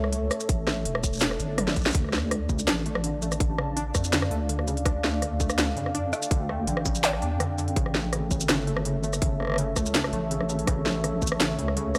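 A moody detuned analog pad, a deep wobbling sine-and-triangle bass and a crisp, tape-warm drum kit with cracking snare open this dark, cinematic half-time drum and bass excerpt at 165 BPM in D harmonic minor, joined by a tight, up-front electronic kick at 0.5 seconds. A faint electronic swell and a short drum fill lead into a warbling, lo-fi pluck arpeggio at 1.9 seconds, its wave-folded tone colored by chorus and analog delay in the background, as the harmony moves from A to D minor and back to A at 7.8 seconds. The pad pumps under sidechain with chorus, and the whole mix sits in light reverb with a dry, gritty, transformer-saturated hardware character.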